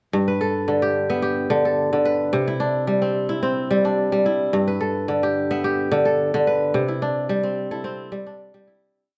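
West African traditional string music at 109 BPM in G major, this short, hypnotic piece features a solo kora, crisp and ringing up front, spinning a fingerpicked interlocking ostinato over a G and C chord cycle in a moderate recital-hall reverb before fading out from 6.7 seconds.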